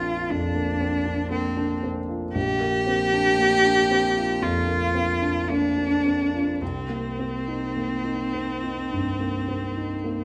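From the opening moment, a bowed cello and a baby grand piano sound together in this hazy, wistful impressionist duo, a short passage cut from a longer classical piece. The solo cello carries the melody in a focused, clear tone with vibrato, sitting up front and moving within a narrow middle range. Beneath it, the piano's dark, mellow accompaniment reaches down into the deep bass, its long sustain blurring the harmony into a hazy wash. The tempo drifts slowly, around 52-60 BPM in 4/4, with a rubato feel and tuning set to A4 = 436 Hz. The harmony rests on a Bbadd9 chord before shifting to Cm7 at 6.6 seconds, and the recording ends at 10.2 seconds within a moderate recital hall reverb that lends a gentle sense of space.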